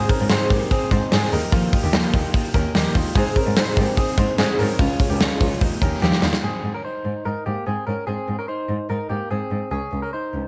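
Nostalgic and breezy, this short cut of jangly indie pop at 147 BPM in Ab major pairs a full-bodied picked steel-string acoustic guitar and a big, up-front rock drum kit with a tight kick that ends with a fill from 6.0 to 6.4 seconds, while a bright, twangy clean electric guitar spins lush chorused arpeggios and a rich bowed cello carries the bass line with vibrato and portamento through to the close, all in light reverb.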